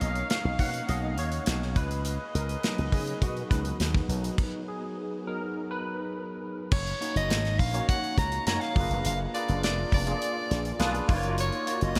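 Breezy and upbeat, this polished 1980s jazz-funk pop passage opens with a barky, lightly overdriven tine electric piano soloing through a combo amp over growly, envelope-filtered slap bass and a punchy studio drum kit, with a tight horn section adding a second line until 4.1 s and a stop arriving at 4.4 s, before a clear soprano saxophone with light vibrato takes the melody at 6.7 s in a small room with light reverb.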